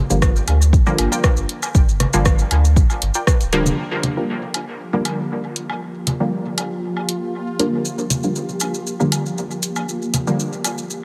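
A cavernous, lightly reverberant mix carries this hypnotic dub techno excerpt in G minor at 118 BPM, where a muted, detuned chord stab with chorus, phaser and dub echo pumps up front over a round sine sub bass, a deep tape-warm kick, a punchy analog drum machine's hi-hat and rim click, grainy maracas, woodblock and congas, and a softer background stab riff, until at 3.8 seconds a bubbling, resonant stepped-filter texture rises in, followed at 4.5 seconds by a blurred granular cloud pad, as filter sweeps move across the stab and pad.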